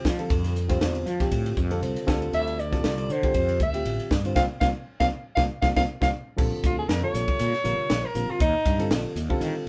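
Electric jazz fusion at 118 BPM in 4/4 with a light sixteenth-note swing, slick and soaring, settling into Bb major at 6.4 s as the mellow soprano saxophone, carrying a light vibrato and a roomy, distant sheen, takes its solo over chords moving from Fadd9 and Dm9 through C7sus4 to Bb69 and Ebmaj9. A barky, reedy electric piano with a touch of overdrive comps throughout and drops in a fill at 1.6 s, while a growly fretless electric bass and a crisp, up-front drum kit with a high-tuned snare and punchy kick join the whole band in an accent from 4.4 s. The group plays live together in one room with moderate studio reverb, in this short section cut from a longer piece.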